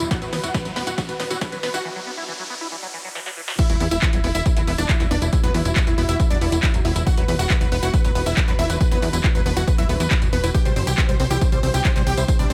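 Bittersweet and emotional, this uplifting trance excerpt in E minor moves at 138 BPM, opening with a build-up where an electronic riser and filter sweep climb over drum fills and a brief break before the drop lands at 3.6 seconds. A bright, detuned supersaw stab carries the melody with sidechain pumping and dub echo, while a punchy, tube-saturated analog bass, a squelchy liquid acid arpeggio tucked in the background with phaser and chorus, and a very quiet, ethereal pad with octave-up shimmer fill out the harmony, which rests on Esus2 before shifting to C at 10.5 seconds. An up-front, tape-warm electronic kick anchors the groove alongside a punchy analog drum machine with claps, hats, snare, tambourine and crash, and from the drop a catchy, full-bodied unison lead adds a second line in the background, all in a dry mix with little reverb.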